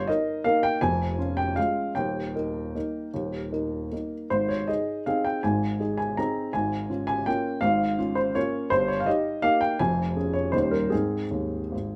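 Graceful and playful, this 12-second classical piano waltz cut from a longer piece moves in a rubato 3/4 around 146-173 BPM in A-flat major, with a solo upright piano, woody and intimate with audible action noise, sitting up front in a moderate large-studio reverb as its chords pass from Eb/G through Bbm7/Ab to an Eb7 that resolves home to Ab at 10.9 seconds.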